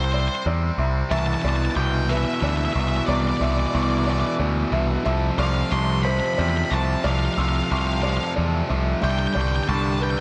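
A slow, hopeful rock passage in 6/8 at 61 BPM opens with an octave-fuzz lead guitar carrying a soaring melody between C5 and C6, its dark, distorted tone trailed by analog delay. Beneath it, a felt-muted upright piano sits in the background with soft, intimate arpeggios, its audible action noise and analog delay adding a natural texture. A sludgy distorted guitar grinds out a bright, overdriven riff low in the mix, while a growling picked electric bass sits up front with a direct, amped overdrive. At 1.1 seconds a biting overdriven guitar joins with a second riff, thickening the low end as the harmony moves over a held C bass through E5, F5 and G chords. The dark, warm production is bathed in digital ambience, and the section is cut from a longer piece.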